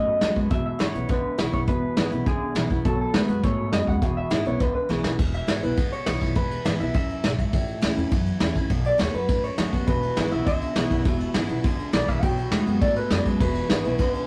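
A straight, rollicking rockabilly beat drives this rowdy fragment from a longer piece, with up-front brushes on a vintage kit that has a punchy kick and a rolled-off top, and woody, thumpy pizzicato upright bass on gut strings. A bright, full-bodied steel-string acoustic guitar is picked with audible finger squeak under two twangy, slightly broken-up electric guitars through a small old amp, both touched with phaser. One electric plays a low riff that drops out at 5.2 seconds and returns at 9.9 seconds; the other carries the melody, and a clean electric guitar solo runs from 5.2 seconds, after a drum fill at 4.9 seconds, all captured as a rough rehearsal-room recording in a small, moderately reverberant room.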